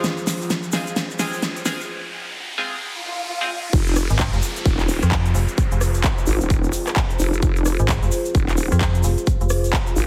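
A swung 16th-note groove at 130 BPM in 4/4 drives this aggressive, gritty bass house excerpt in F minor. It opens with a build-up: a big-room dance kit with a huge snare, handclaps, crisp hats and rim clicks plays a fill over a moody, detuned analog pad, a grainy tube shaker sits in the background, an electronic riser and swell rise beneath, and a nasal, band-passed sawtooth chord stab with phaser and dub echo plays until 3.5 seconds. At 3.7 seconds the drop lands with a punchy, up-front kick and a resonant vowel-sweep wobble bass carrying chorus and overdrive, soon joined by a metallic FM bass, both pumping under sidechain compression, all in a heavily compressed, radio-like, high-passed mix with light digital ambience.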